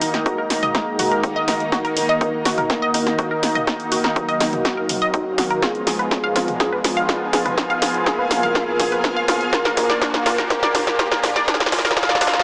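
A huge ambient reverb hangs over this melodic techno excerpt, its high-passed, small-speaker sound lending a boxy, distant sheen to a melancholic yet driving build-up. Up front, a punchy, overdriven analog drum machine fires a dry snare, hi-hats and toms through a drum fill, while a layered, heavy electronic kick sits further back with its own overdrive and high-pass filter. A very quiet plucky analog bass with a wave-folded, ring-modulated bite anchors the low end as a detuned unison pluck spins arpeggios in the background, colored by cassette tape, sidechain pumping and dub echo. A brassy, bold analog pad punctuates the harmony with chorused, pumping stabs, and a fat, nasal analog lead carries the melody from 0.3 seconds under a filter sweep, its vibrato tone also pumping and echoing. Beneath it all, a very quiet, warbling unison pad holds long chords while a cloudy, evolving granular pad adds a sustained texture, a faint riser enters at 3.1 seconds, and the harmony moves from Ebm through Fdim to Bb.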